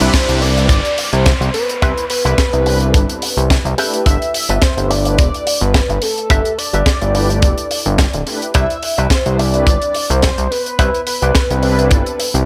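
A tight, up-front kick drives a sunny, groovy nu-disco excerpt alongside a small-room funk kit with a high-tuned snare and hi-hat carrying a light swing on the sixteenths, its hits trailing into analog delay. Underneath, a fat, saturated analog bass, thick and nasal with a plucky filter and sidechain pumping, sits prominently in the low register. A warm, smooth pad of detuned sawtooths breathes with chorus and pumping, while a dark, clean electric guitar pushed through an envelope filter picks out a compressed riff. On top, a bold unison lead with a sub octave, a moving notch and vibrato carries the mellow melody through a haze of cassette tape and analog delay. A downlifter sweeps through the opening 4.1 seconds, the harmony moves between Cmaj9 and G69, and a clean electric guitar fill arrives at 12.2 seconds in an echo-heavy, lightly reverberant mix.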